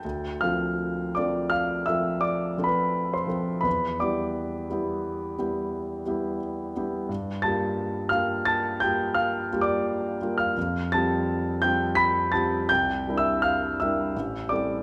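A close, intimate concert grand piano, its action noise audible, its deep bass and long sustain polished and up front, plays alone from A1 to B6 in this nocturnal, mysterious fragment of impressionist classical solo piano, moving with rubato at 85 BPM in 5/4 in D dorian through Dm7, Em7, Gm9, Fadd9, C9 and Am7 inside a wet recital hall reverb.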